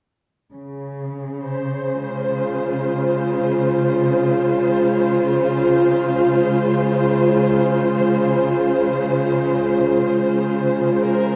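Steeped in a wet plate reverb and heavy echo, this serene, luminous ambient fragment, cut from a longer piece, drifts in free time in D-flat major, tuned to A4 = 439 Hz, as a dark, expressive chamber string section plays alone from 0.5 to 11.4 seconds, its bowed vibrato ringing through tape echo over a single Dbmaj7 chord.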